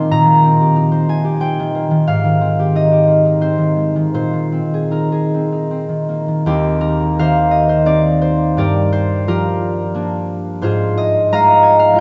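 In a gentle 3/4 with a rubato feel drifting between 77 and 92 BPM, this classical solo harp piece moves at an unhurried pace in Eb major. A single concert harp, acoustic and fingerpicked, carries the whole 12 seconds, spanning from Eb2 up to C6 with a ringing, up-front presence. The mood is dreamy and peaceful, as the harmony glides from Cm7/Bb through Abmaj7 to a suspended Bb9sus4 before settling onto Eb6 at 6.4 seconds. The second half continues through Gm7 to Ab6, leaving the phrase open since the clip is cut from a longer piece. A wet cathedral reverb with a long 4.1-second tail surrounds the harp, and the top end is softened, with nothing above 7.9 kHz, lending the recording a hazy, cushioned glow.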